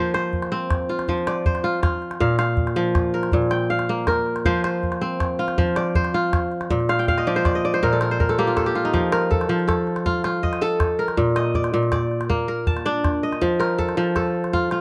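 A straight 12/8 lilt at 107 BPM in dotted quarters drives this joyful West African traditional excerpt in F mixolydian, its harmony swaying between F and Bb. The kora sits up front with bright, ringing, fingerpicked arpeggios spanning Bb2 to A5, while a small calabash in a live room adds percussion beneath it from 0.1 seconds. A crisp kora fill from 6.9 to 8.9 seconds leads into the second section, all under light reverb.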